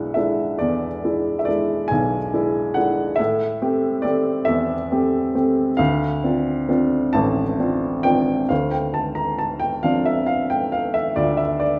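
A woody, intimate upright piano opens this melancholic, wistful fragment of a lyrical classical solo piece in D minor, moving freely in a rubato 6/8 at about 45 beats per minute with the pulse felt in dotted quarters. Placed up front with its action noise clearly audible, the piano spans from A1 to Bb5, passing through E7, Am7 and Dm7 harmonies before a new passage begins at 8.5 seconds. A wet recital-hall reverb with a church-like sense of space surrounds the natural tone, and the piece stops at 11.8 seconds, cut from a longer work.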